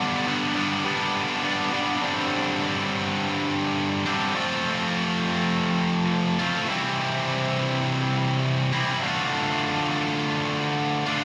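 Cathartic and angsty, this rock excerpt moves at 103 BPM in a straight 4/4, carried entirely by a lone high-gain electric guitar that is bright, picked, double-tracked and up front, with distortion and a slapback echo, ranging from G2 to F4 across all 11.2 seconds. The chords run from G through Gsus4, F and C to Dm, with the change at 2.0 seconds opening a longer second passage. The sound is that of a live gig heard through the venue's PA, with a light recital-hall reverb around it.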